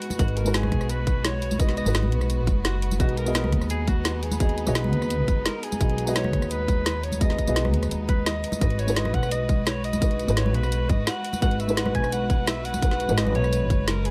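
This liquid drum and bass excerpt opens with a breathy, vintage-toned alto saxophone carrying a jazz-style solo melody with subtone and dub echo. A dark, boxy baby grand piano with short sustain and digital delay plays accompaniment, and a lush, bowed studio string section holds bright, intense chords with vibrato in the background. Set in G# minor at 171 BPM in a straight 4/4, the music stays on a G#m7 chord, giving it a dreamy, floating mood. The layered, produced drum kit brings hi-hat, rim click, snare and tambourine, and very quiet congas played with hard hands join at 0.1 seconds. At 0.2 seconds, a tight electronic kick sits up front alongside a woody, pizzicato upright bass with steel strings and tube saturation, which is the loudest pitched part. A small-room ambience wraps the drums and kick, which were re-recorded in that space.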